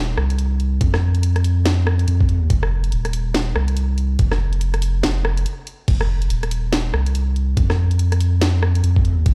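Deep dubstep at 142 BPM in 4/4, with a half-time feel and a 60% swing on the 16ths, this heavy, cavernous excerpt is cut from a longer piece and tuned to A4 = 445 Hz. A soft dub sub bass opens the passage, a deep, round, sustained tone with a fast attack that blends triangle and square waves and sits up front, ranging from Eb1 to F2. A garage drum kit joins at 0.2 seconds, an electronic, layered and produced set of crash cymbal, hi-hat, rim click and a cracking snare, placed lower in the mix. At 0.8 seconds an electronic kick drum arrives up front, a compressed, pitched-down, muffled and thumpy sampler-style hit with a tape-like character, re-recorded in a small room. A brief break at 5.5 seconds interrupts the groove. The production itself is quite dry, but it was played back on a big sound system in a bare room, so a stone room reverb gives the whole excerpt its hollow, echoing space.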